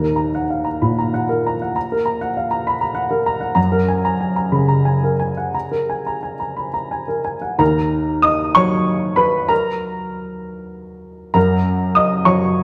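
A warm, woody upright piano, slightly detuned and sitting up front, rings into a wet concert-hall reverb in this short excerpt of neoclassical minimalist piano in Eb minor, tuned to A4 = 437 Hz. The solo piano moves in a rubato 6/8 at roughly 57-67 BPM, spanning Eb2 to Eb6 as it passes from Eb minor to Gbadd9 in a melancholic, reflective mood. At 7.6 seconds a new passage returns to Eb minor before settling on Gb near the close at 12.6 seconds.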